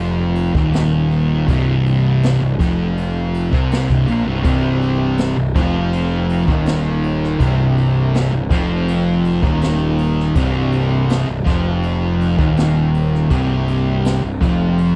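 A straight 4/4 pulse at 81 BPM drives this heavy, ominous stoner and doom metal excerpt in C minor, resting on a single C minor chord and tuned slightly below standard pitch. Two dark, picked fuzz guitars grind out the riff from the start, one up front and one in the background, over a growly, overdriven fuzz bass. A distant, roomy brush kit with a boomy kick and dark cymbals arrives at 0.4 seconds, and a bright, double-tracked overdriven guitar joins in the background at 4.4 seconds, all in a dry mix with little reverb.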